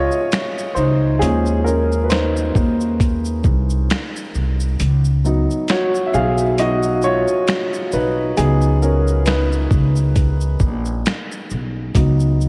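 The dark upright piano takes the lead from 0.0 seconds, its mellow, vintage tone dulled further by cassette tape and a low-pass filter, moving from Eb9sus4 to Db9sus4 at 4.8 seconds. This is a nostalgic, cosy lo-fi hip hop excerpt in Db mixolydian at 67 BPM in 4/4, with a gentle 16th-note swing. Beneath it, a pizzicato upright bass with gut strings gives a woody, thumpy low end, sitting up front in the mix. A compressed, pitched-down boom bap sampler-style kit arrives at 0.1 seconds with a thumpy kick, medium-tuned snare, hi-hat, shaker and finger snaps, its gritty, tape-warm character adding texture, and the kick drops out between 4.8 and 6.6 seconds. The whole mix is dreamy and soaked in a moderate plate reverb with a long tail, lending the fragment a hazy, cassette-worn glow.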